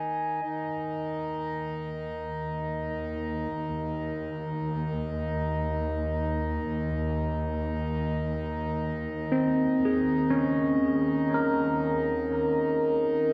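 An overdriven tine electric piano stands out, arriving at 9.3 seconds with bright, barky arpeggios between C4 and Bb4. Up front and gritty through a combo amp, it is colored by a phaser and a diffuse ambient delay. This reflective, serene ambient piece moves in free time, tuned to A4 = 439 Hz, and is cut from a longer work. Beneath it, a pedal harmonium holds a reedy, breathing drone spanning Eb3 to Eb4, mellow and smooth, sitting close to the listener. Far behind, a dark studio double bass section sustains a bowed Eb2 with woody tone, soft attack and vibrato. A concert hall reverb with a 1.9-second decay wraps the parts in a lush, spacious room.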